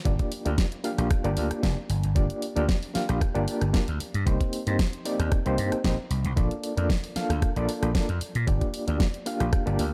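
An overdriven, reedy electric piano runs through a combo amp with fast tremolo and delay, comping over a Gm7, Cm7 and Bbmaj7 progression in this sleek, sensual nu-disco excerpt. A punchy, amped vintage slap bass sits up front beside a thumpy, compressed, tape-warm electronic kick. A layered pop drum kit adds hi-hat, rim click and a fat snare with studio reverb, all within a dark digital ambience.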